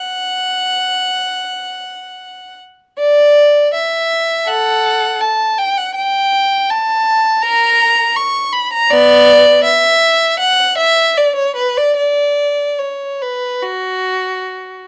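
Classical baroque-style suite movement for unaccompanied violin, solemn and grave, in which a single rich, focused bowed violin with vibrato sings up front from B3 to C#6 in a free, rubato 4/4 over nearly 15 seconds, set in light reverb with a dark production, cut from a longer piece.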